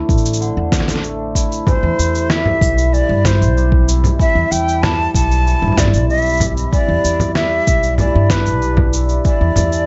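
A breathy jazz flute sits up front, entering at 1.7 seconds with an unsteady, vibrato-tinged melody whose soft attack and lifted highs are trailed by digital delay. Beneath it, a hammered cimbalom rings and shimmers through arpeggios from the very start, also carrying a digital delay. A woody pizzicato upright bass with steel strings anchors the low end, while a deep, tape-warm electronic kick drum and a muffled, pitched-down kit of electronic cabasa, medium-tuned snare and congas keep a straight 4/4 pulse at 95 BPM. In the background, a warbling, lo-fi pad of detuned square and triangle tones holds dark, nostalgic chords with a slow attack, long release, chorus and its own reverb. This delicate, autumnal folktronica fragment, cut from a longer piece, moves from Dsus2 to Cmaj7 as the flute arrives, all within a lightly reverberant mix with softened top end.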